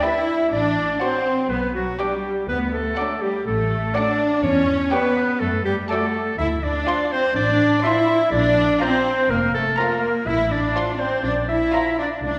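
A clear clarinet stands out in this playful, whimsical film cue at 123 BPM in 4/4, alongside a pure silver flute and a very quiet vintage oboe on second lines, an intense violin section carrying the high melody over a more distant violin line, lush viola and warm bassoon accompaniment, roomy French horn chords, and smooth cello and double bass sections underneath, the double bass entering at 0.5 seconds, with the ensemble heard from further back in a scoring-stage reverb that suits the mischievous, quirky mood.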